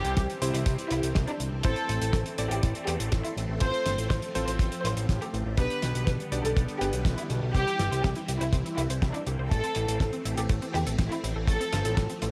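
Romantic and sunny, this italo disco passage floats a soft, bowed violin section with tape echo over a swirling, phased string machine. A warm, vintage electric grand piano plays filtered stabs until 7.5 seconds, when a bright, detuned unison pluck enters with arpeggios through cassette-style echo. Underneath, a fat, saturated analog bass sits up front beside a tight, dry kick drum and a damped 70s kit with a thick snare in gated reverb, all set in a small, lightly reverberant room.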